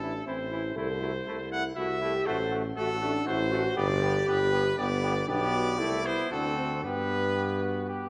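Warm and triumphant, this classical brass quintet passage in 3/4 is cut from a longer piece, with a clear trumpet carrying the melody up front, its light vibrato and soft attack sounding distant and roomy, while a warm flugelhorn sings a second line further back. A French horn with light vibrato and a brilliant, vintage-toned trombone fill out the accompaniment, the trombone sitting in the background, as a warm tuba anchors the bass up front. The harmony moves from A minor through a diminished chord to G, closing on D7 at 6.3 s and resolving to G at 6.8 s, all bathed in the wet reverb of a scoring stage.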